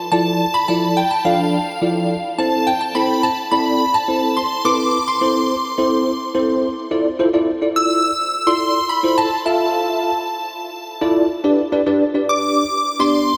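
A straight 4/4 pulse at 106 BPM drives this energetic, bittersweet pop fragment in D dorian, where a clean, bell-like tine electric piano with ensemble chorus plays the accompaniment from 0.1 s while a shimmering, detuned FM bell with a long release, chorus and delay carries the high melody, the whole mix soaked in a huge ambient reverb of 4.6 seconds that gives it a dreamy haze as the chords move from Dmadd9/F and Am to Dmadd9 and G.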